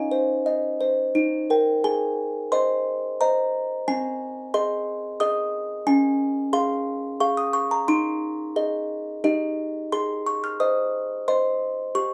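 A gentle lilt in 3/4 at 89 BPM carries this short classical lullaby, a straight, unhurried sway cut from a longer piece. A solo music box plays throughout, from 0.0 to 12.1 seconds, its delicate, tinkling tones ranging from C4 up to F6 and sitting up front with the airy resonance of a large box. The harmony rests in Ab major, opening on Ab over Eb and moving through Db before settling back on Ab near 9.9 seconds. A brief opening phrase gives way at 1.8 seconds to a longer second section that carries the rest of the passage. A moderate studio reverb adds a soft halo around the plucked notes, keeping the mood innocent and tender.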